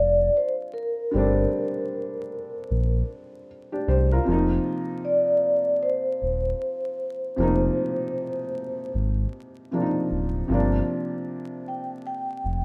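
Reflective and nostalgic, this swung lo-fi hip hop fragment sets a dark, ringing vibraphone melody, played with soft mallets and fast motor vibrato and bathed in plate reverb and analog delay, over a boxy, felt-muted upright piano with audible action noise and cassette tape color, while a deep, full sine sub bass with octave sits up front beneath a rough home-demo mix dusted with vinyl crackle.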